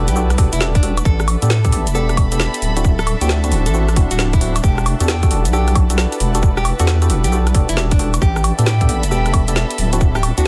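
A deep, saturated wobble bass sits up front in this late-night, soulful two-step garage excerpt in E minor at 134 BPM, swung on the 16ths, with a tight layered electronic kick entering at 0.4 s beside a garage kit of woody snare, metallic hats, rim click, shaker and woodblock. A bright, fingerpicked nylon-string guitar carries the melody through tape echo, while hollow organ stabs with chorus and echo punctuate the Em11, A9sus4 and D9 changes. Around them, a dark, intimate string section pumps in the background and a very quiet, warbling vintage pad hangs overhead in a dry, dense, heavily limited mix.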